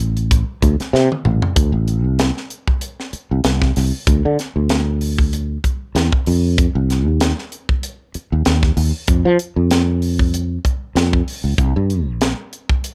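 A sustaining fretless electric bass and a crisp fusion drum kit open this nocturnal, slick electric jazz fusion excerpt together at 96 BPM in 4/4, with a lightly swung sixteenth feel and tuning set to A4 = 439 Hz. The growly, direct bass sits up front, ranging from A1 to F3. The acoustic kit has a high-tuned snare, a punchy kick, toms and hi-hat in a mid-forward studio-room sound with a rolled-off top. A drum fill from 0.9 to 1.6 seconds leads into the next section, and the bass drops out at 12.3 seconds while the drums carry on briefly under a light reverb.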